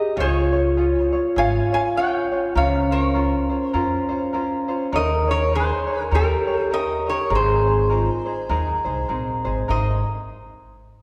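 A lazy swing in 4/4 at 101 BPM carries this dreamy, languid Hawaiian piece in Ab major, cut from a longer performance. The metallic, nasal resonator slide guitar, played with fingerpicks, sings the melody up front from 0.2 s, while a mellow, ringing soft-mallet vibraphone with its motor off adds a second line, a light fingerpicked tenor ukulele supplies accompaniment, and a woody, dark, thumpy gut-string upright bass plays pizzicato underneath. The harmony drifts from Db through Bbmadd9/Db, Eb7sus4 and Eb7 to Abadd9 before a new section opens at 9.7 s, all bathed in a wet concert-hall reverb that places the listener further back in the room.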